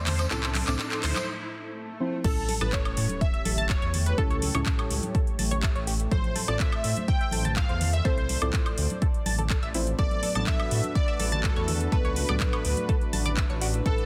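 An overdriven, up-front electronic kick drives this uplifting, hopeful progressive house excerpt at 124 BPM, alongside a house kit of metallic hi-hats, handclaps, crash and woodblock, dry background congas, a jingly tambourine at the very start, and a rumbling detuned saw bass pumping beneath. A short build-up with a drum fill, riser, swell and a filter sweep on the dark, gritty chord stabs opens onto the drop at 2.2 s, where an impact lands and a smooth, soft supersaw second line enters behind the bright, catchy plucky unison lead. A dusky analog pad, tight wave-folded arpeggios with phaser and tape colour, and echoing delays fill out the pumping Fmaj7 to A7 progression in a dense, heavily limited digital ambience.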